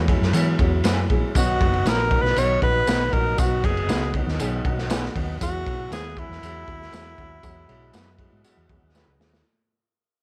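A small room's ambience surrounds this short, gritty excerpt of uptempo 1960s-style soul, running at 118 BPM in a straight 4/4 and fading out across its whole length, with a danceable, joyful mood. Up front, a raw garage drum kit with a boomy kick, medium-tuned snare, dark cymbals and a saturated, rolled-off top pumps in the room alongside a round, punchy hollow-body short-scale electric bass played with the fingers, and a jingly tambourine joins them. A woody, boxy upright piano carries the accompaniment, while an electric guitar through a small old amp sits in the background with slightly broken-up, lo-fi stabs treated with lush chorus and slapback echo. At 1.4 s a breathy tenor saxophone takes the solo melody in a pop style with light vibrato, and a very quiet tonewheel organ enters at the same moment with lightly overdriven, sustained chords through a slow rotary speaker, key click audible. 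The harmony moves from Eadd9 to B and back to Eadd9, and a drum fill arrives at 8.9 s.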